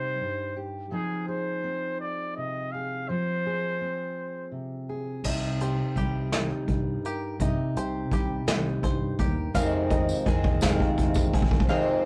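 A clear, lightly vibrato trumpet sings over a dark, woody fingerpicked steel-string acoustic guitar at 0.0 s, opening this stirring, bittersweet indie folk excerpt in C minor at a slow 56 BPM in 6/8, before punchy fingered electric bass and an up-front vintage brush drum kit with a fill join at 5.2 s, followed by twangy banjo arpeggios at 5.3 s, to build the arrangement over a rough rehearsal-room sound, with a shimmering, octave-doubled twelve-string acoustic guitar and a jingly tambourine arriving at 9.5 s.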